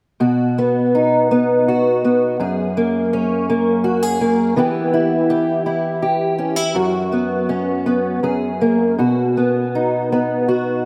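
In a loose, rubato three-beat lilt, this nostalgic, gentle folk excerpt features a lone fingerpicked acoustic archtop guitar, warm and up front from 0.2 to 10.9 seconds, its tone colored by analog chorus and tape echo and bathed in a long plate reverb that gives the whole piece a dreamy, drifting haze as the chords pass from B through F#add9, Em and F#sus4 before settling back on B.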